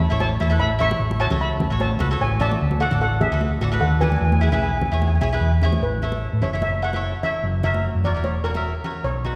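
A shimmering, airy steel pan played with medium rubber sticks carries the melody up front in this sunny, bouncy calypso excerpt in A major, moving at 149 BPM with a light swing. A round, punchy fingered electric bass sits equally forward beneath it, while a crisp, mellow picked cavaquinho and close, high-tuned congas struck with soft hands fill out the groove. The whole ensemble rings out in a reverberant church or concert hall, and the chords move from A through F#m7/A, D and E before the second section turns to Aadd9 and F#7 at 5.8 seconds.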